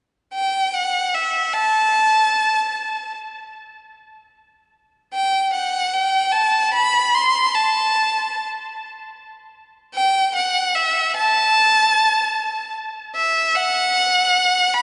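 A rich, focused violin carries the melody from 0.3 seconds, bowed by a single player with vibrato and a smooth top, sitting up front with tape echo in a dreamy, reverb-soaked hall as this cathartic, melancholic rock fragment in a straight 6/8 builds, its pitch set slightly below standard tuning.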